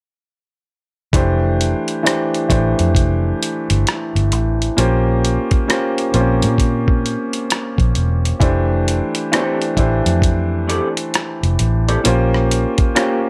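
R&B and neo-soul at 66 BPM in F major, with a soulful, swung 16th-note feel: a clear, long-sustaining grand piano moves between F69 and Bbm6 over a dark, round, foam-muted electric bass and a gritty, compressed sampler-style kit with thumpy kick, hi-hat and rim click, all up front in light reverb, and a slightly broken-up, lo-fi electric guitar with phaser adds a second line at 9.3 seconds in this short cut from a longer piece.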